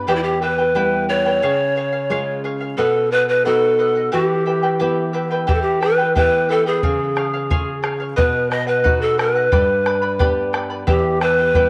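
Festive yet melancholic, this short excerpt of Andean folk moves at 89 BPM in a straight 2/4, set in E dorian. Large pan pipes carry the melody up front, their cane tone breathy and reedy with a crisp, chiffy attack, vibrato and rolled-off highs, trailed by tape echo. Beneath them a charango shimmers with fingerpicked double strings, some doubled at the octave, while a nylon-string guitar adds a full-bodied, deep classical accompaniment with audible finger squeak. At 5.5 seconds the bombo enters with a round, acoustic thump in a small room as the opening section repeats. The chords circle through Em, C#, B and back to Em, with a G appearing near the end, all set in a wet spring reverb.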